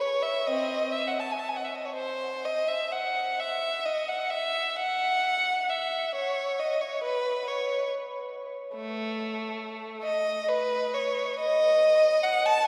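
Meditative and lonely, this free, rubato classical fragment cut from a longer piece in 6/8 features a single unaccompanied violin, rich and focused with vibrato and a smooth top, bowed up front across a range from A3 to A5 and tuned to A4 = 442 Hz, yet heard from further back within a wet cathedral reverb that lets each phrase hang for about 5.2 seconds.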